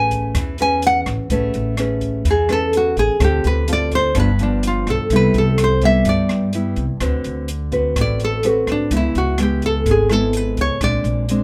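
Light reverb gives this short bossa nova cut an intimate, up-front sound, with two classical nylon-string guitars close to the listener. It moves at 126 BPM in a straight 4/4 with a sunny, romantic mood. The fingerpicked lead guitar carries the melody and takes the solo throughout, and you can hear finger squeak on its strings. A second, thumb-plucked guitar supplies the accompaniment beneath it. A woody, pizzicato upright bass strung with steel holds the low end, while an open jazz kit enters at 0.1 seconds with hi-hat, rim click and a boomy kick, its dark, smooth tone and rolled-off top suggesting a small room. The harmony glides from Amaj9 through Dm7, G7 and Cmaj7 to D6 and C#m7, landing on Bb9 at 10.8 seconds before the 11.4-second excerpt ends.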